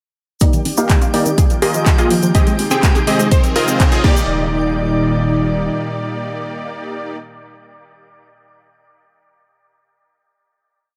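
Progressive house at 124 BPM in Eb major, a short, euphoric and expansive piece that builds from 0.4 seconds and lands on a final hit at 4.3 seconds, moving through Ebmaj7, Bb7sus4, Abmaj7 and Fm7 before returning to Ebmaj7. A punchy, up-front electronic kick drives a four-on-the-floor pulse, joined by a pop drum kit with metallic hats and claps on the backbeat, a grainy, close and dry tube shaker in hand-played sixteenths, and a very quiet tribal conga loop that was re-recorded in a large room. A plucky, wave-folded analog bass gallops in sixteenth notes under sidechain pumping, while a detuned unison pluck spins a repeating sixteenth-note riff over a pedal note, lush with chorus and dub echo and swept by a filter through the build. An up-front supersaw stab hits dotted-rhythm chords through a low-pass filter with its own sweep, and a breathy pad with a slow attack holds sustained chords from 0.7 seconds. 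A twinkling granular texture with an octave-up shimmer holds a high note and a very quiet riser lifts toward the drop, leaving the pad, pluck, stab and bass to ring out after the drums fall away around 4.1 seconds.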